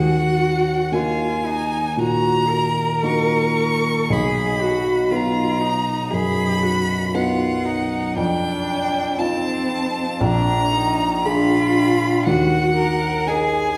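A resonant hall sound surrounds this slow, romantic piano trio excerpt, with the reverb of a church or concert hall lingering around every note. At 58 BPM in 4/4 and a flexible rubato feel, the music moves through Eb minor with a yearning, solemn mood. A rich, focused violin carries the melody high and close, bowed by a single player with vibrato and sitting up front. Beneath it, one cellist plays an expressive second line with vibrato and sliding portamento. A warm baby grand piano, also up front, supports both with long-sustained accompaniment from deep bass into the middle register. All three play together throughout the 13.8 seconds, as the harmony passes from Eb minor through B major, F7 and Bb7b9 before settling back on Eb minor.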